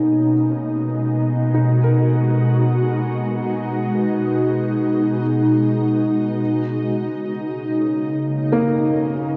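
Luminous and weightless, this ambient passage floats in free time in B major, cut from a longer piece and lasting about 9.4 seconds. An ethereal, airy pad holds sustained chords throughout, its detuned sawtooth and triangle tones blooming with a slow attack and long release, treated with ensemble chorus, built-in reverb and phaser, and sitting bright and up front while a filter sweep moves across it. Alongside it, a felt-muted upright piano plays soft, mellow arpeggios with short sustain, its thin, intimate, vintage tone carried by tape echo. The harmony rests on B6 before shifting to D#7 at 6.4 seconds. A huge ambient reverb with a long tail surrounds the whole recording, and a worn cassette quality adds a warbling pitch drift that gives the sound a gently aged, dreamlike haze.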